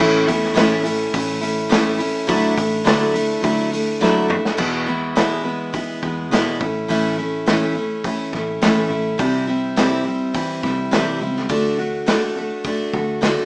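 A straight 4/4 pulse at 104 BPM drives this short folk rock and heartland rock fragment in D major, tuned slightly flat of standard pitch, carrying a jangly, warm mood. A full-bodied dreadnought steel-string acoustic guitar, picked and up front, leads the accompaniment from the start, moving through A and Dadd9 before shifting to E, A, C and D. Underneath, a round, foam-muted electric bass sits low and amped in the mix, playing picked notes in a narrow bottom register. A vintage acoustic drum kit with a punchy kick, medium-tuned snare, dark cymbals and a pumping small-room sound stays close in front, and a drum fill from 4.0 to 4.6 seconds ushers in the second section. Light reverb and a rough home-demo character with a small-speaker quality give the whole cut a homespun, unpolished feel before it breaks off at 13.5 seconds.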